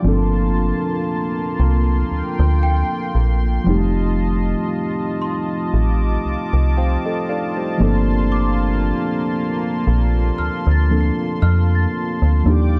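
A dark, up-front metallic FM bass and muted, felt-like synth keys open this late-night, sensual R&B excerpt together, joined from the first moment by a smooth analog pad and a delicate celesta. The bass has a digital, fast-decaying attack, while the intimate, full-bodied keys carry a chorus sheen and a hint of filter sweep as they supply the accompaniment. Underneath, the detuned sawtooth pad holds soft sustained chords with chorus and tremolo, and far in the background the bell-like celesta, slightly out of tune in a boxy small room, adds sweet sparkle through an analog delay. The slow groove has a light sixteenth-note swing, moving from Gm11 to F7 and returning to Gm11 near the close. The synth keys step forward with a brief fill between 6.2 and 8.3 seconds, all set in light digital ambience with a dark, warm production.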